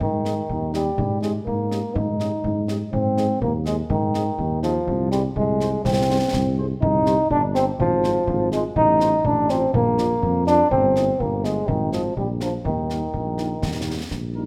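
A moderate scoring-stage reverb surrounds this proud, spirited military-style march for wind band, an excerpt in 2/4 at 123 BPM that moves from Ab major to Eb major at 6.8 s. Up front, a clear euphonium with light vibrato and a soft attack carries the second line, while a mellow tuba anchors the bass and a dry, close concert bass drum and snare with dark cymbals keep the straight march pulse. Behind them, a punchy French horn section plays very quiet accompaniment, and a close-miked cornet with a gentle attack sings the melody in classical style.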